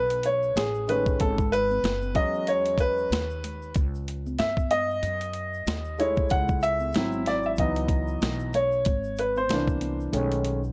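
An upright piano takes the solo from the very start, its woody, natural tone sitting up front as it moves through lush extended chords such as B13, E6 and F#m9, with a C9 near 9.5 seconds before the B13 returns. This relaxed, cool jazz-hop cut has a loping swing in 4/4. The sampler-style boom bap kit is compressed and pitched down, with vintage 12-bit grit, a thumpy kick, a high-tuned snare and hi-hat. Beneath it, a growly, dark upright bass with steel strings is plucked in the low register. Tube shaker and congas sit in the background with a small-room feel. The dry, gritty recording has light reverb and modest room ambience, and the short section runs to about 10.7 seconds, cut from a longer piece.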